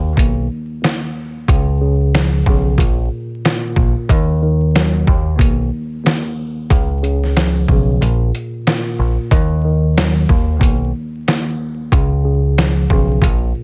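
Swung sixteenths drive this gritty, tough boom-bap hip-hop clip, where a compressed, pitched-down, muffled drum kit with a thumpy kick and medium-tuned snare sits up front from 0.2 seconds alongside a dark, round picked electric bass. A mellow tine electric piano with a cassette-tape tint plays through its built-in speakers, cycling through B, Db7 and Ebm with a brief break from 8.0 to 9.3 seconds. The dry mix carries a layer of vinyl crackle.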